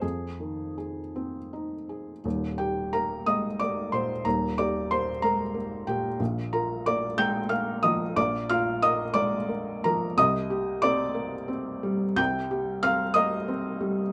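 Hopeful and tender, this brief neoclassical minimalist piano excerpt unfolds in a rubato 6/8 at roughly 53-63 BPM, counted in dotted quarters. A felt-muted upright piano plays alone throughout, its soft, mellow tone sitting up front with an intimate closeness. The part spans a generous range, reaching from Eb1 in the deep bass up to G6 at the top. The harmony rests in Eb major, opening on Fm7 before settling onto Ebmaj7 at 2.2 seconds, then moving through Bb and closing on Cmadd9 at 10.2 seconds. A moderate studio ambience with a short 0.5-second decay surrounds the piano, and the fragment is cut from a longer piece.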